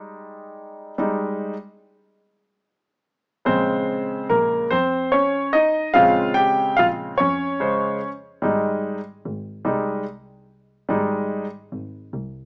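This rough home demo has a small-speaker character, with a moderate studio reverb that gives the room a short tail. It is a fragment of a dramatic, melancholic six-eight pop ballad, moving slowly at 48 BPM in dotted quarters with a straight feel and tuned to A4 = 439 Hz. A bright baby grand piano carries the accompaniment up front, its brilliant, intimate tone natural and close enough that the action noise is audible as it moves through Ebadd11/G, Bbm7 and Abmaj7. A bowed double bass joins at 3.5 seconds, sitting much lower in the mix with a dark, woody tone, a soft attack and vibrato from a single player. The piano stops at 11.4 seconds, and the bass sustains on until the cut at 12.5 seconds.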